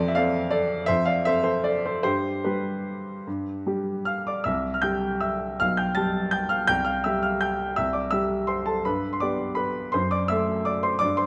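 A 3/4 waltz pulse sets the rhythm, taken with a flexible rubato at a tempo that moves between 145 and 174 BPM. This is a short classical piano waltz in C major, elegant and graceful in mood, cut from a longer piece. A solo baby grand piano carries the music alone for the full 11.3 seconds, ranging from B1 up to A6, its tone warm and natural and placed up front. The harmony opens on F6 before settling toward G, and a new passage begins at 4.5 seconds, moving through C, G/B, C and G before turning to D/F#. A wet recital hall reverb surrounds the instrument, lending the phrases a gently lingering tail.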